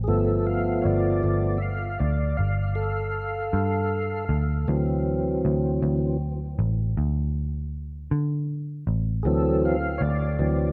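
A fat, lightly overdriven tonewheel organ leads this short slow blues excerpt, playing sustained chords with audible key click, a chorus vibrato shimmer and the turning motion of a slow rotary speaker. Beneath it, a vintage muted electric bass, picked and foam-muted, supplies a dark, round, amped bottom that sits up front alongside the organ. The mood is laid-back and swaggering, with a straight feel in 12/8 that moves from G7 to D7 at 4.7 seconds. Both parts play throughout, and the organ carries the solo role for the whole passage. A lush hall reverb with a long tail bathes the mix, giving the recording a dreamy, soaked atmosphere.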